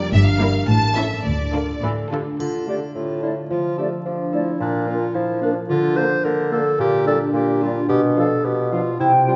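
Set in a moderate scoring-stage reverb with a soft, rounded top end, this short, quirky D minor film cue at 109 BPM in 2/4 opens with lush, rich bowed violins carrying the melody over warmer violins, violas, rich cellos and double basses, all alongside a ringing, up-front concert harp's arpeggios. A present, mellow clarinet slips in around 1.5 s, and as the strings drop away around 2.4 s a mischievous woodwind passage takes over, with the clarinet joined by a roomy solo bassoon, a pure, hollow flute section, dark distant French horn chords and a brief, dry triangle.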